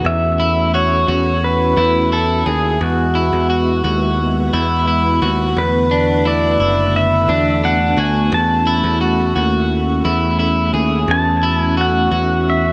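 A straight 4/4 pulse at 87 BPM carries this blissful, dreamy dream pop excerpt, where a bright, growly picked electric bass sits up front beneath vintage, organ-like ensemble strings holding soft-attack sustained chords through A6/E, Eadd9, Bm7 and F#m7. An up-front electric guitar at the edge of break-up picks compressed arpeggios through lush chorus and analog delay, while a clean, twangy pedal steel enters at 0.1 s with a fingerpicked slide melody full of volume swells and its own analog delay. Light reverb and digital ambience give the mix its echo-heavy haze.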